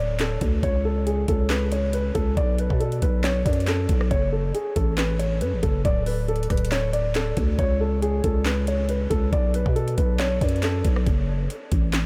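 A light reverb surrounds this eerie, menacing trap excerpt at 138 BPM in a half-time feel, where a dark, boxy concert grand piano carries the melody through a low-pass filter and diffuse ambient delay, circling a D5, A/C#, B5 and F#m progression until it drops out at 11.0 seconds. Underneath, a growling, buzzy 808-style bass with a fast attack and decaying sine tone sits up front. An electronic drum kit enters at 0.2 seconds with a knocking kick, sharp snare, metallic hi-hats, handclaps and rim clicks.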